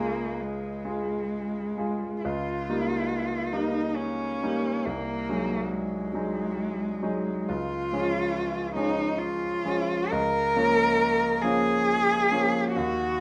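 Romantic classical music for cello and grand piano, yearning and elegiac, unfolds in a gently flexible triple time with free rubato, cut from a longer piece. The rich bowed cello carries the melody up front with vibrato, soft attacks and expressive portamento, while the bright, vintage-toned grand piano accompanies with long, smooth sustain. A wet stone room reverb surrounds them, and the harmony turns to a minor chord at 10.1 seconds before the passage breaks off at 13.2 seconds.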